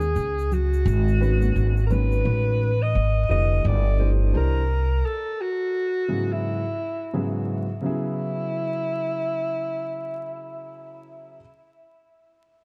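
Jazz-hop with a relaxed, smooth swing, this brief fragment features a breathy alto saxophone carrying the melody with vibrato and scooped notes, sounding distant and roomy through a tape echo. A woody pizzicato upright bass sits up front until 5.0 s, while tube shaker and congas murmur in the background only for the opening 2.2 s. A dark, mellow grand piano enters at 1.2 s with audible action noise, moving through extended jazz chords before settling on E, all wrapped in a warm small-room production dusted with vinyl crackle.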